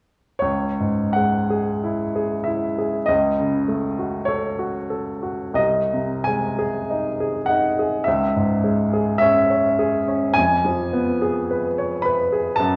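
Worn, warbling cassette tape gives this short passage a drifting pitch, set within a lingering recital-hall reverb and a touch of small-room ambience. A clear, polished baby grand sits up front alone from 0.4 to 12.8 seconds, playing a wistful, yearning romantic nocturne in C# minor at a slow 38-56 BPM with free rubato. Its harmony moves from C#m through D#m7b5/C# and G#/B# before returning to C#m and reaching C#7/E#, where this fragment of a longer piece breaks off.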